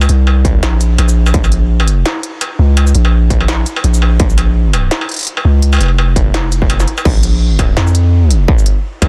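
A half-time drum and bass groove at 168 BPM in 4/4 drives this dark, cinematic drop in Bb minor, its sixteenths carrying a 57% swing. A long, sustained 808-style bass sits up front from the first moment, deep and sine-like with a fast attack that decays, ranging from F1 to F2. An industrial drum kit plays throughout, with a clanging snare, smooth hi-hats, crash cymbal, shaker and struck metal, all sounding electronic and produced as if re-recorded in a small room. At 0.4 seconds a distorted electronic kick drum joins, pushed up front with the same small-room character. The mix is dense and heavily limited with little reverb, and this piece, cut from a longer track, repeats its single section from 7.1 seconds to the end.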